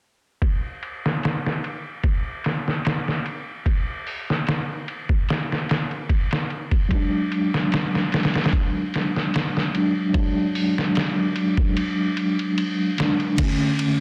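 Melancholic and smoky, this short trip hop cut moves at a slow 74 BPM in 4/4 with a light swing on the sixteenths. A sampler-style drum kit opens the piece at 0.4 seconds, its compressed, pitched-down sound carrying a gritty edge, a thumpy kick and a medium-tuned snare alongside hi-hat, ride and crash, all dulled by low-pass filtering and sitting up front after being re-recorded in a large room. At 6.9 seconds a mellow tine electric piano enters on an F#sus2 chord, its clean, direct tone colored by tremolo, tape echo and the crunch of a vintage 12-bit sampler. The kick drops out from 11.8 to 13.4 seconds, thinning the groove just before the harmony shifts to a rootless Bm7. A light reverb surrounds the parts, and the dense, heavily limited master keeps the sound close and compact.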